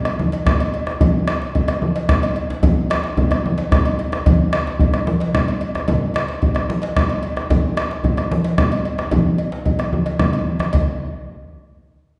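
Festive and earthy, this clip from a longer West African traditional drum ensemble piece moves at 148 BPM in dotted quarters in a 12/8 metre, with a round, up-front bombo alongside metallic cowbell, a deep djembe set back in the mix, and close, ringing, low-tuned congas. The whole group sits in a wet recital hall, heard from further back in the room with a softened top end. A drum fill at 10.1 seconds leads into a new section at 10.7 seconds.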